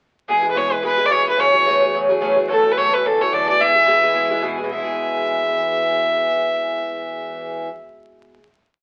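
This is a short, complete Celtic folk reel, cheerful and rollicking, with a swung eighth-note lilt in common time. A single clear fiddle sits up front and carries a motif-based melody built from song-like phrases, bowed with light vibrato, an intense tone and a smooth top. Beneath it, an Irish bouzouki strums eighths in open chord shapes, its picked double strings giving an acoustic, warm, metallic sound, while a pedal harmonium holds a reedy, breathing drone on a low E. All three begin at 0.3 seconds and run through a brief phrase over E, F#madd9, D and back to E, before settling onto a final chord at 4.7 seconds. The fiddle and harmonium stop at 7.7 seconds, leaving the bouzouki ringing alone, and the whole performance carries the crackle of a very old 78 rpm record within a moderate studio ambience.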